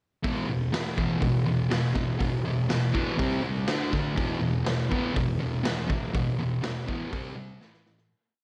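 A thick, double-tracked fuzz guitar drives this short, raw and gritty garage rock piece at 122 BPM in E minor, chugging palm-muted eighth notes through power chords on E5, C5, D5 and A5. Up front beside it, a saturated acoustic drum kit with a punchy kick, medium-tuned snare and hi-hat pumps in a bright stone room, its top rolled off, laying down a big rock groove. The sound carries a cassette-tape grit and light studio reverb, fading out from 6.1 seconds as a drum fill closes it at 7.6 seconds.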